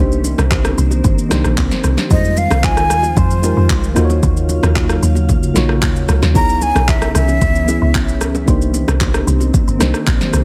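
The recording has a heavily compressed, radio-like digital ambience, and this short cut from a longer piece is a deep, soulful amapiano groove in straight 4/4. Up front sits a layered, overdriven deep house kit with a deep kick, punchy snare, handclaps, rim click and shaker, re-recorded in a small room. A woody, percussive log drum bass with a fast attack and decaying tail carries the low end, while very quiet bongos and congas add bright, close hand percussion. A soft, round FM electric piano with chorus plays dark, full-bodied accompaniment over a glassy, ethereal pad that hovers in the background with ensemble chorus and long reverb-washed sustains through a Cm9, Fm9, Ebm9, Dbm9 and back to Cm9 progression. From 2.1 to 8.2 seconds a breathy jazz flute takes the melody, expressive with vibrato, a soft attack, lifted highs and a digital delay.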